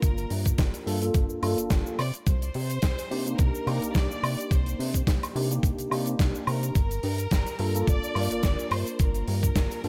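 Nu-disco with a groovy, sensual mood, this short cut from a longer piece moves at 107 BPM in 4/4 with a light 16th-note swing, sitting in G minor over chords that shift from Gm7 to Cm9 at 2.0 seconds and back to Gm7 at 6.8 seconds. A thumpy, sampler-style electronic kick sits up front, carrying a tape-warm character and the sound of a large room, while a polished, gated 80s drum kit adds snare, hi-hat, cabasa and woodblock in a bright stone room. A glossy, retro synth bass with chorus anchors the low end, its dark, plucked tone blending pulse, sawtooth and triangle waves with ring modulation and wave-folding. A mellow tine electric piano plays clean accompaniment through ensemble chorus and tape echo. Above it, a lush studio violin section carries the melody with focused vibrato and a smooth top, touched by tape echo, and the whole mix sits in studio reverb.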